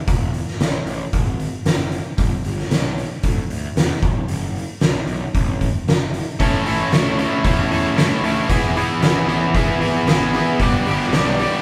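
A straight 4/4 groove at 114 BPM drives this raunchy, swaggering stretch of blues rock and southern rock, cut from a longer piece and played live by a power trio in one large studio room. An oversized, low-tuned acoustic drum kit sits up front from the start, its fat snare, punchy kick and hi-hat sounding dark, gritty and saturated in a bright stone room. Alongside it, a fuzz-laden picked electric bass growls through the low register with an overdriven, direct-and-amped bite. At 6.4 seconds an overdriven semi-hollow guitar arrives with a double-tracked, hollow-body riff, bright and pushed to the fore. The chords move from E through G and F#madd11 to A, then return to E and G, all set in a moderate studio reverb.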